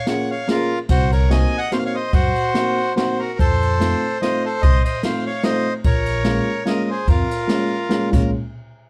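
A whirling, nostalgic musette waltz in Bb minor at 145 BPM, swung and rubato, where a reedy, up-front accordion carries the melody over a mellow, woody dark upright piano, a distant, roomy brush kit with dark cymbals and a boomy kick, and a pizzicato upright bass with steel strings that joins at 0.9 seconds, moving through Bbm7, Cm7b5 and F7 in a dark, lightly reverberant production cut from a longer piece.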